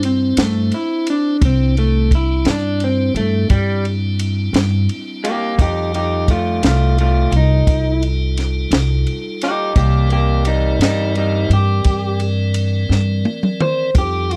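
A dry, close 1970s-style studio sound frames this gritty, swaggering slow blues excerpt in 12/8 at 57 BPM, where a dark, slightly broken-up electric guitar through a small old amp carries a clean, fingered solo over woody, thumpy pizzicato upright bass, a compact cocktail kit with a punchy kick, high-tuned snare and dark cymbals, and a piping tonewheel organ holding key-clicked chords through a slow rotary speaker, moving from Cadd9 to F9 and C9 before a drum fill at 12.9 seconds.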